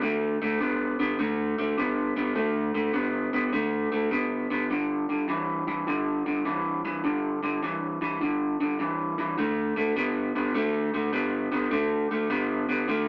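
A lone electric guitar opens this short blues excerpt, played through a small old amp that gives it a bright, twangy, slightly broken-up tone with a lo-fi edge. The mood is laid-back and gritty, moving at 103 BPM in 4/4 with a swung eighth-note feel, and the instrument is tuned to A4 = 442 Hz. Picked and placed up front, the guitar stays in a low-to-middle register between G2 and B3 for the full 13.1 seconds. Its power chords shift from D5 to G5 at 4.7 seconds and return to D5 at 9.4 seconds. A wet studio reverb surrounds the guitar, lending the spare part a roomy glow.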